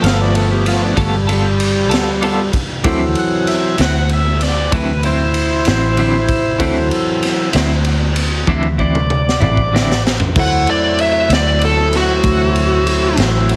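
A rolling, straight 12/8 groove drives this swaggering, rollicking slow blues excerpt, where a reedy, key-clicking tonewheel organ with overdrive and slow rotary speaker takes the solo over a clean hollow-body electric guitar accompaniment with tremolo, a very quiet, boxy grand piano, a round, foam-muted bass and a gritty, saturated garage kit with a high-tuned snare that plays a fill from 8.5 seconds, before a bright, overdriven lead guitar steps up front at 10.4 seconds, all framed by light reverb and a heavily compressed radio sound.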